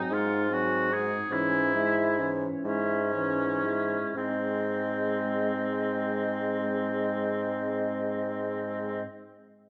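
Warm and tender, this slow romantic movement for wind quintet, cut from a longer piece, unfolds in 6/8 with rubato, slowing over its first 4.2 seconds before a new passage begins. A pure, crisp-edged silver concert flute sings the melody with expressive vibrato, while a distant, roomy oboe carries a second line up front, and a clear French horn and a background clarinet fill out the accompaniment. A bassoon with a soft attack and light vibrato sits up front on a low bass note from 0.1 seconds, and the quintet plays in a wet recital hall.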